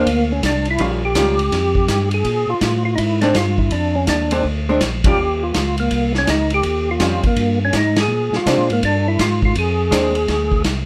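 A lightly reverberant, greasy soul jazz organ trio swings at 164 BPM in Bb mixolydian in this short cut from a longer piece, with the percussive tonewheel organ carrying the melody up front through a slow rotary speaker and chorus vibrato, its clean third-harmonic percussion ringing over a fat tone. Underneath, a second tonewheel organ plays the bass line with light overdrive and audible key click, while a dark, compressed, hollow-body archtop guitar picks out the chords, moving from Bbadd9 through Eb9 and Bb7 to Bb9. A punchy vintage drum kit with dark cymbals and a pumping small-room sound sits up front, and the whole band hits accents together at 5.0 and 7.9 seconds.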